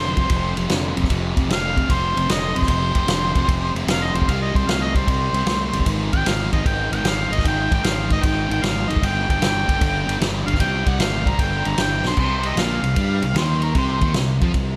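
Gritty and smoky, this blues rock cut leans into southern rock, swinging at 152 BPM in C minor. An overdriven harmonica carries the melody as a solo from the start, its vibrato and scooped notes giving a vintage bite as it sits high above the band until 14.2 seconds. Underneath, a thick, double-tracked fuzz guitar drives a bright, distorted picked riff up front, while a growling fingered bass adds overdriven weight in the low end. A vintage acoustic drum kit with dark cymbals, a medium-tuned snare and a punchy kick sits up front, and a drum fill at 12.0 seconds leads into a new section on C minor. The band fills a big arena-like space, with lush hall reverb wrapped around a small room ambience, before the clip cuts off.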